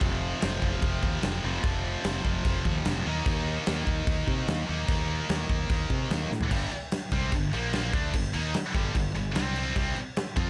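Heavy and menacing, this hard rock passage in straight 4/4 is cut from a longer piece. A bright, high-gain guitar riff, double-tracked and picked, sits up front with distortion. Beneath it, a fingered electric bass growls with fuzz and overdrive, its tone punchy, direct and amped. A big acoustic drum kit with a dark, smooth room sound drives the part, pairing a punchy kick and medium-tuned snare with bright crash cymbals and toms. A drum fill at 6.3 seconds leads into a new section at 6.5 seconds, where the harmony moves from F5 and Eb5 toward G5, Bb5, Gm and C5. Light reverb gives the band some air.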